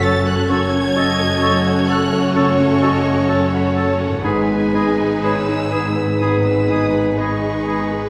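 Moving in a slow, rubato 4/4 at around 60-65 BPM, this cinematic film-score passage for orchestra feels bittersweet and moving, cut from a longer piece and resting on F#m before shifting to G#m at 4.2 s. A lush violin section carries the expressive, vibrato-rich melody high above, while a second violin line, a pure, close-miked flute section, a solo clarinet with a smooth top and a soft-attack oboe weave supporting lines beneath it. A felt-muted upright piano adds an intimate, thick-felt accompaniment alongside a smooth, even viola section, and a tight French horn section holds sustained chords in the background. A concert harp rings out bright, thumb-plucked arpeggios, and the low end comes from a cello section with portamento and a distant double bass section. The whole ensemble sits in a generous scoring-stage reverb with the spacious bloom of a church or concert hall.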